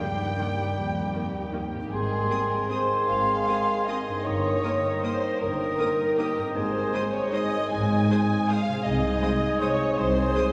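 An elegant, festive orchestral passage in a lilting triple metre, taken from a longer classical work, opens with most of the ensemble at once: a soft-edged, rich violin section carries the melody from the background while a bright, airy silver flute plays a second line in the same high register. Dark, lush symphonic violins sit up front on a second line, joined by a distant clarinet, a mellow, vintage-toned bassoon and a very quiet, even viola section. A concert harp ringing with fingerpicked arpeggios and a focused cello section on the bass complete the texture, and a shadowy French horn section holds a sustained chord only until 1.7 seconds. The double basses join the low end at 0.8 seconds, and a clear, present oboe enters at 1.9 seconds as the music moves into its second section, with the harmony swinging between Eb and Ab and passing through Eb7/G and Ab/C. The rubato phrasing and uneven beats give it an expressive, breathing quality, and a wet cathedral reverb bathes the ensemble in a long, spacious tail.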